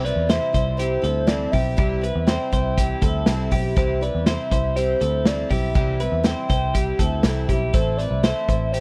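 This breezy, bright slice of jangly indie pop in C major features a hollow, woody synth lead carrying the melody, its soft, clarinet-like tone treated with chorus, phaser and tape echo and a touch of vibrato. Beneath it, a picked twelve-string acoustic guitar adds shimmering, octave-doubled accompaniment with audible finger squeak, while a clean, twangy twelve-string electric guitar plays compressed arpeggios. A vintage muted electric bass sits up front with a round, foam-muted tone. A vintage drum kit enters at 0.1 seconds with punchy kick, medium-tuned snare and hi-hat, its sound dark with a rolled-off top. The tempo is a straight 121 BPM in 4/4, with the harmony resting on C before moving to Am at 7.7 seconds, all captured in a dry, close 1970s-style studio recording cut from a longer piece.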